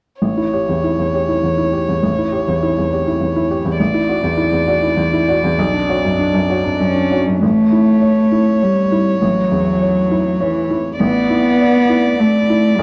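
A dry, close 1970s-style studio sound in a small room frames this intimate, tender neoclassical excerpt in a rubato 3/4, where a felt-muted upright piano, mellow and soft with audible action noise, accompanies a veiled con sordino violin melody from 0.2 s, and a dark bowed cello with light vibrato and tape echo adds a second line from 6.8 s over chords moving from A7 toward Dsus2/A.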